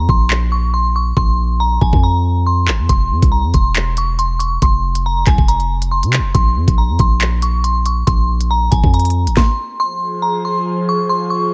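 Menacing and cold, this drill excerpt runs at 139 BPM with a half-time 4/4 feel in F harmonic minor, opening on a break where a crystalline FM synth bell carries the melody over a deep, sine-toned 808-style bass. The electronic drill kit adds a knocking kick, sharp snare, crisp hi-hat and handclaps, until the bass and drums fall away around 9.4 seconds for a brief stop. The harmony then turns to F minor as a breathy, detuned pad with chorus and phaser enters at 9.9 seconds beneath the chorused, low-pass-filtered bell, framed by a digital ambience.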